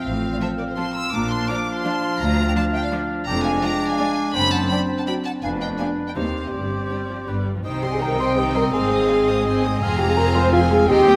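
Playful and mischievous, this whimsical cinematic cue in a brisk three-time sets an expressive, vibrato-rich violin section on the melody over mellow French horn chords and a bowed bass of smooth, distant cellos and lush double basses. A bright, punchy clarinet, an airy flute ensemble and a mellow solo cor anglais weave second lines, while background violins and portamento-tinged studio violas join at 0.4 s. A delicate, bell-like celesta adds a sweet melody from 7.8 s, and the whole ensemble sits in a concert hall reverb, cut from a longer piece.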